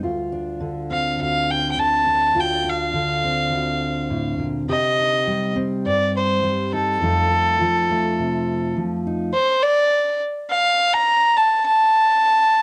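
Bittersweet and wistful, this short folk excerpt cut from a longer piece moves at 103 BPM in a straight 4/4. A fingerpicked steel-string acoustic guitar with a full-bodied jumbo sound carries the accompaniment from the start, moving through Dm7, Cmadd9 and F7 before it stops at 9.3 seconds. A single bowed fiddle enters at 0.9 seconds with the melody, its nasal, reedy, gut-string tone sitting up front and a little louder than the guitar. After the guitar drops out, the fiddle plays alone over a build-up that runs to 12.6 seconds, where the recording breaks off. Both instruments carry a cassette-tape character, and light small-room reverb gives the home recording an intimate, close feel.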